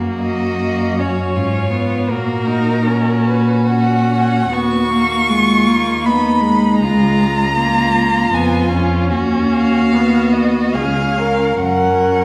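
Lyrical and warm, this slow, romantic classical string-quartet movement in F# major sways in rubato 3/4 at 64-83 BPM. A rich lead violin enters at 0.2 s with expressive vibrato and portamento, while a focused second violin supports it with its own vibrato, a close, soft-attacked viola adds expressive vibrato and portamento, and a clear, smooth, even cello anchors the bass up front, all set in the wet reverb of a scoring stage heard from further back in the room.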